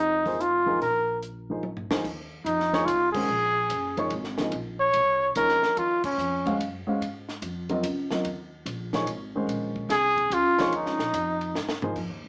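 A breathy, up-front trumpet with light vibrato carries the melody in this spiritual, cool modal jazz excerpt in Eb dorian at 145 BPM in a swung 3/4, falling silent at 6.6 seconds and returning at 9.9 seconds. Beneath it, a mellow grand piano with short sustain plays the accompaniment over suspended chords, a woody, thumpy pizzicato upright bass on gut strings holds the low end, and a compact cocktail kit with a high-tuned snare, punchy kick and rolled-off top adds brief fills, including one at 11.6 seconds, amid a couple of band accents. The band sits in a wet club reverb, heard from further back in the room through a small speaker.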